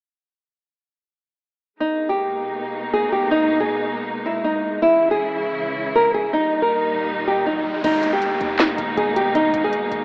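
In a half-time feel, this eerie, hard-hitting hip hop excerpt opens with a small, fingerpicked nylon-string guitar melody up front, filtered dull, above lush, bowed symphonic strings with vibrato, and then at 7.8 seconds the crisp hats, sharp snare, handclaps and crash of an electronic trap kit arrive with a punchy, tight 808-style bass in the background, with a riser and downlifter from 7.5 seconds and a rough, AM-radio demo sound in light digital reverb.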